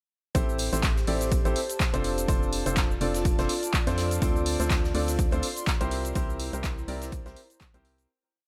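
Piano house at 124 BPM opens at 0.3 seconds straight into a soulful, bittersweet drop, with a clear, worn concert grand up front playing dotted-rhythm chords through a digital delay over Am7, F6, Dm7 and C7. A hollow, organ-like FM bass follows the chord rhythm beneath a punchy four-on-the-floor electronic kick, tape-warm programmed claps, hats and shaker, and a very quiet looped breakbeat from a big acoustic kit, while piano, bass and an airy, breathy chorused pad all pump against the kick. The pad drifts mellow in the background in a light small-room reverb, and the whole piece fades out from 5.5 seconds to its close at 8.1 seconds.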